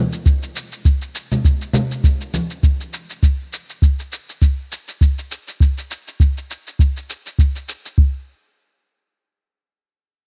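A relaxed 4/4 groove with a gentle swing on the sixteenth notes gives this sunset chillout piece its easy, sunny and smooth motion. A deep electronic kick drum with an analog character sits up front and anchors the pulse until about 8.1 seconds. A quieter shaker, sampler-style and compressed at its natural pitch, adds a gritty, tape-warm texture across the same stretch. Congas played with soft hands appear briefly near the front of the mix from 1.3 to 2.5 seconds, their acoustic tone warm, compressed and saturated. The sound is dry and bright in a 1980s-style digital manner, and this fragment of a longer piece shifts into a new section at 8.0 seconds.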